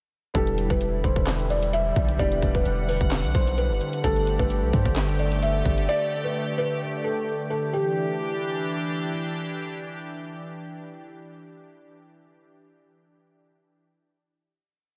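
Hip hop trap in E minor at 130 BPM with a half-time feel, menacing and dark, built on a short hook that moves from Em7 to Gsus2 before settling onto a held Em7 final chord at 7.7 seconds. A felt-muted upright piano carries a soft, looping melody with audible action noise and diffuse ambient delay, backed by a boxy, worn baby grand holding close-voiced chords in the background under lush chorus, while a detuned sawtooth pad with ring modulation and a resonant filter swell sustains until 10.9 seconds. Up front, a bouncy electronic trap kit with a hard-clipped kick, sharp clap-layered snare and metallic sixteenth-note hats with fast rolls sits beside long, sliding sine 808 sub-bass notes that follow the kick, both stopping at 5.9 seconds, in a dreamy mix soaked in huge reverb.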